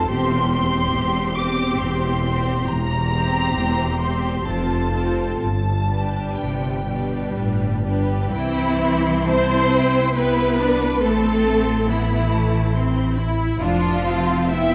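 A dark, warm hall sound with a moderate concert hall reverb surrounds this slow, lyrical excerpt from a romantic movement for string orchestra in C major, moving in a rubato 3/4 at around 60-72 BPM. A clear, smooth studio violin section carries the high melody with even vibrato, while a second symphonic violin section adds an intense, more distant second line beneath it. The violas, focused and lush, fill in the accompaniment from the middle of the ensemble. Underneath, a rich, close cello section and an up-front double bass section share the bass line with a smooth, even tone. The harmony opens on C over E and moves through F and G, then a second section from 8.3 seconds turns from C toward A minor and D minor over F.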